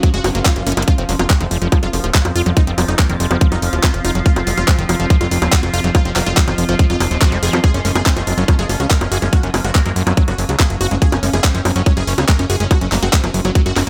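This driving, alien psychedelic trance clip runs at 142 BPM in a straight 4/4, led by a tight, overdriven electronic kick sitting up front and a layered garage kit of bongos, handclaps, hi-hat and a cracking snare, with a drum fill at 0.7 seconds. Underneath, a fat, nasal analog bass built from detuned sawtooth and square waves holds the low end, saturated and up front, while a squelchy, distorted acid bass riff sits further back, its resonant filter plucks thrown into dub echo. A punchy supersaw stab carries the melody in the background, bright and detuned, roughened by vintage 12-bit sampler grit and swept by a phaser, with dub echo trailing behind it. An overtone-sweeping drone of ring-modulated chords and a blurred, cloudy granular pad fill the space with slow-attack sustain and built-in reverb, while a very quiet, juicy blip pluck adds a second line from 1.3 seconds. The stab, drone and acid bass all pump against the kick, a faint electronic swell and zap flickers in at 0.2 seconds, and the harmony shifts between Gb5 and F5, the whole set in a digital ambience.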